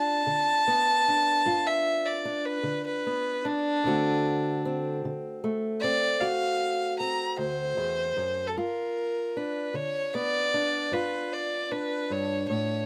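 A dark, close fiddle carries the melody up front with light vibrato and sliding portamento, taking a solo through the first 8.6 seconds of this gritty, rollicking acoustic country blues excerpt in G mixolydian at a slow 51 BPM in 12/8, over a boxy, fingerpicked old ladder-braced guitar with woody, aged strings moving from G7 to D7 and back to G7 in a moderate booth ambience.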